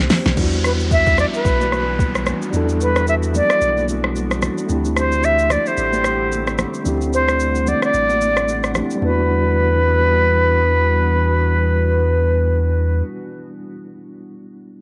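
Late-night and hypnotic, this amapiano excerpt moves at 111 BPM in E minor with a 16th-note swing, its breathy, tongued concert flute carrying an expressive straight-tone melody up front through tape echo over a mellow tine electric piano and a deep, punchy sine sub bass with a pitch-drop attack. A smooth R&B drum kit with soft kick and fat snare, ringing high-tuned congas in the background, an electronic downlifter and a glassy, ethereal FM pad with chorus and sidechain pumping fill out the groove, which shifts from Em9 to D7sus4 before the kick drops out at 7.9 seconds and the drums stop at 9.0 seconds. The whole has a cassette home-recording character with a moderate spring reverb.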